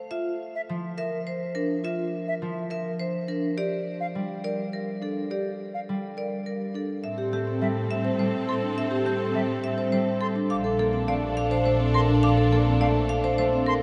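The rich, bowed double bass section sits up front once it arrives at 7.0 seconds, anchoring a hypnotic, meditative stretch of minimalist classical pattern music in three-beat metre. Before that, a ringing, fingerpicked concert harp opens the passage, joined almost at once by a bright, percussive marimba carrying the melody on hard mallets and a metallic vibraphone spinning arpeggios with a slow motor vibrato. A pure, distant silver flute adds its own crisp-edged arpeggios in the background from 0.6 seconds. At the 7.0-second mark the texture fills out: a soft-attacked French horn takes a second line, a clear, focused string section holds lush sustained chords, and the basses lend expressive depth. The harmony moves from a chordless start through G7 to Am7 and Bbmaj7, and a huge, wet reverb places the ensemble in a vast, echoing space.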